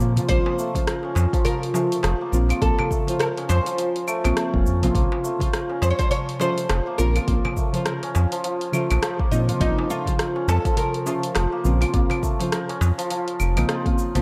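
Organic downtempo at 103 BPM in Bb harmonic minor, earthy and mystical, where a round, evolving analog bass sits up front with sidechain pumping, shimmering hammered santur arpeggios and a soft, detuned chord stab with chorus and tape echo hold a Bbmadd9 colour, a woody, fretless oud carries the melody through digital delay from 0.3 seconds, and a tape-warm deep house kit of cabasa, claves, hi-hat and rim click plays alongside a deep electronic kick and a crisp metal-shell darbuka in the background, all in light reverb.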